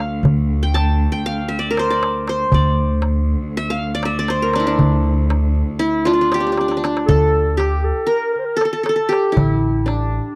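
Melancholic and soulful, this short cut from a longer Turkish makam ensemble piece in a straight 9/8 sets a bright-edged, plectrum-plucked qanun melody up front over a bowed, clear cello drone that stops at 7.1 seconds, a woody, thumpy pizzicato upright bass and a crisp metal-shell darbuka played with soft hands, whose fill at 6.6 seconds leads into a new section where a mellow, subtone clarinet with light vibrato and scooped notes, having entered at 6.1 seconds, adds a second line in the background, all in a dry, close 1970s-style studio sound with light reverb.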